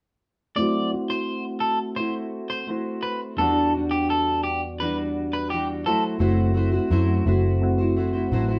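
A straight 4/4 pulse at 85 BPM carries this hazy, lonely indie pop fragment, cut from a longer piece and set in a moderate room reverb that places the band playing together in one space. A fingerpicked, plugged-in jumbo steel-string acoustic guitar sits up front with a full-bodied tone touched by vibrato, while soft, round electric-piano-like synth keys add gentle, decaying chords coloured by chorus and a filter sweep. Alongside them, a slightly broken-up, compressed electric guitar plays a picked second line from 0.6 to 6.0 seconds, its tone warm and present. At 6.2 seconds the music moves into a new section as a vintage foam-muted fingered bass enters, dark and amped, sitting up front at the bottom of the mix. The harmony drifts from F#m7b5 to Em9 and back, giving the passage an unresolved, dreamy ache.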